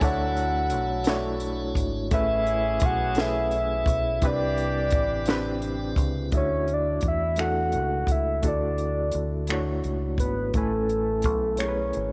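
Set in a small room with light reverb, this slow, sensual six-eight R&B excerpt centres on a soft, round synth lead doubled an octave below, carrying the melody up front with chorus and tape echo over a gritty, barky electric piano pulsing with fast tremolo. A deep, dark fingered bass and a compact, dry cocktail kit of finger snaps, hi-hat, punchy kick and high-tuned snare sit close and intimate. Early on, a piping tonewheel organ with key click and slow rotary speaker holds chords until 6.3 seconds, while a clear vintage horn section adds stabs until 5.9 seconds.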